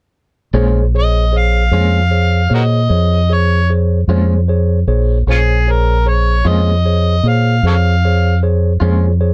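A slow, straight 12/8 pulse at 51 BPM carries this soulful, mournful Bb minor blues fragment resting on a Bbm7 chord, where a round, up-front dub bass anchors a barky, bright tine electric piano and a slightly broken-up, compressed guitar with tremolo through a small old amp, while from 1.0 s an overdriven, gritty harmonica sings a jazz-style solo lead with scooped notes, tongue slaps and light vibrato, all in a dry, dark mix.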